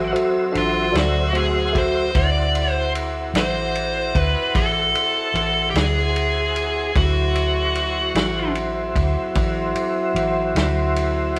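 A dark, overdriven lead guitar opens this gritty, rollicking slow blues excerpt with a solo in the first 2.1 seconds, playing its melody over a D9 chord in D mixolydian. The feel is a straight 12/8 at 50 BPM counted in dotted quarters. Underneath, a bell-like tine electric piano adds bright, clean accompaniment until 2.0 seconds, while a tonewheel organ holds smooth sustained chords through a slow rotary speaker and chorus vibrato. A foam-muted fingered electric bass sits round and punchy up front, and a dry soul drum kit with a tight kick, medium-tuned snare and ride cymbal, its top end rolled off, comes in at 0.2 seconds. The guitar drops out at 8.5 seconds, leaving organ, bass and drums to carry on, all heard as a band playing live together in a stone room with a wet reverb of about one second.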